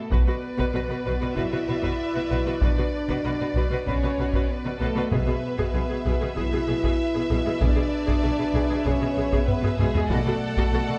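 Dark and heroic, this cinematic orchestral cue moves at a straight 96 BPM in B dorian, driven by a taiko ensemble struck with heavy sticks beneath a lush body of bowed strings. One violin section carries a distant, vibrato-laden melody while a second violin section adds a smooth upper line, violas fill in the accompaniment, and cellos and double basses hold a deep bass on B. Mellow French horns sustain tight chords over a Bm, E/B and D/B progression; a close, dry timpani sits in the background from 5.1 seconds and returns at 10.1 seconds after a drum fill at 9.5 seconds, all within a moderate scoring-stage reverb in this passage cut from a longer piece.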